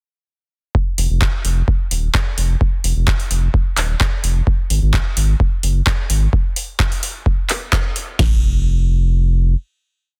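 A dry, dense and heavily limited sound frames this short, raw and trippy acid house piece at 129 BPM in F phrygian, built on a straight 4/4 groove that runs until 8.2 seconds before a final note rings out. A booming analog drum machine enters at 0.7 seconds with a deep four-on-the-floor kick, crisp snare and crash, tape-warm and up front, joined at 1.0 seconds by handclaps and metallic open hi-hats that sound re-recorded in a small room. A round, dark analog bass with a fast attack plays sustained off-beat notes between Eb1 and Ab1, pumping under sidechain compression.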